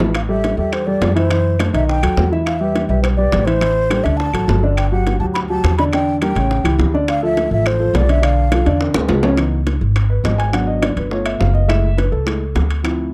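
Driving at 208 BPM in a straight 4/4, this fiery Afro-Cuban jazz piece in A minor sets round, low-tuned bongos, ringing metal-shell timbales and woody claves in the background under a thumpy pizzicato upright bass and a dark, short-sustained grand piano, both up front, while an airy, hollow concert flute with vibrato carries the melody until 8.8 s, when a drum fill leads into a piano solo from 9.4 s, all captured in a dry, close 1970s-style studio sound.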